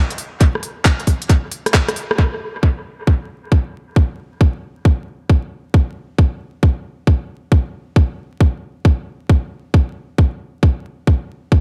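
A bouncy, skippy UK garage excerpt opens at 0.1 s on a garage drum kit of handclaps, crisp hi-hats and rim clicks, up front and trailed by dub echo, with a tight, layered electronic kick joining at 0.4 s under a swung sixteenth-note feel. A drum fill runs from 1.7 s, with a band accent at 2.1 s, after which the kit drops out at 2.2 s and the tape-warm kick carries on alone until 11.6 s. The mix is dry on reverb but heavy with echo and dusted with vinyl crackle.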